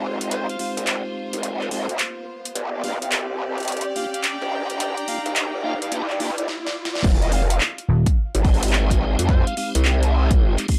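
A growling, wobbling, distorted bass drives this swaggering, gritty glitch hop cut at 107 BPM in F dorian with a swung 16th feel, joined by a gritty overdriven harmonica melody with tongue slaps and scooped notes, piping tonewheel organ stabs through a slow rotary speaker, a rich chamber string texture that stops at 6.5 seconds, an electronic riser and a fat-snared pop drum kit with metallic hats building to a drop at 7.0 seconds, where a punchy overdriven electronic kick enters and a brief amped slap bass note sounds, all in a dry recording with transformer saturation.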